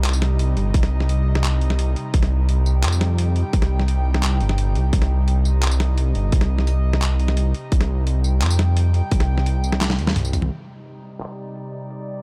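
Half-time drum and bass at 172 BPM in C minor, dark and heavy and cut from a longer piece, where a deep, rumbling detuned saw bass sits up front beneath a gritty, pitched-down sampler-style kit of snare, hi-hat, handclaps, tambourine and toms. An overdriven, hard-clipped electronic kick punches in from 0.7 s, a drum fill arrives at 9.8 s, and a reedy, nasal chamber string section holds sustained chords with sidechain pumping until a filter sweep takes hold of it at 10.5 s as the harmony moves to Cmadd9, all set in a dry, dark, warm production.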